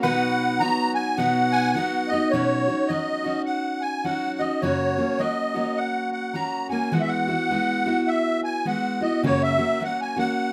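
A musette accordion, a picked steel-string acoustic guitar and a briefly heard mandolin open together in this short, peaceful cut from a longer acoustic folk piece with a gentle swung lilt in 4/4. The accordion carries the melody up front, its reedy, shimmering musette tuning giving the line a wet, wavering color. Beneath it, the jumbo guitar plays a bright, full-bodied accompaniment, also up front, while the woody, double-strung mandolin sits in the background as a second line and stops at 2.1 seconds. The harmony moves through B, Badd9, F#, Eadd9 and back to F#, with the change at 2.3 seconds marking the start of a new section. A wet studio reverb gives the small ensemble a gentle sense of room, keeping the mood warm and unhurried.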